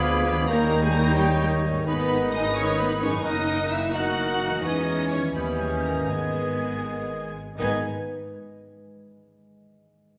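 Rich, vibrato-laden violins sing a high melody over lush second violins, an airy flute section, a bright clarinet, a mellow cor anglais, a clear viola section, a mellow bassoon, mellow French horns, very quiet trombones, a ringing harp in arpeggios, a dark double bass section with portamento and a smooth cello section in this dramatic, restless classical excerpt in G# minor and 6/8 at about 78-88 BPM, slowing from 3.9 s as very quiet, round timpani enter at 6.1 s, all in a recital-hall reverb.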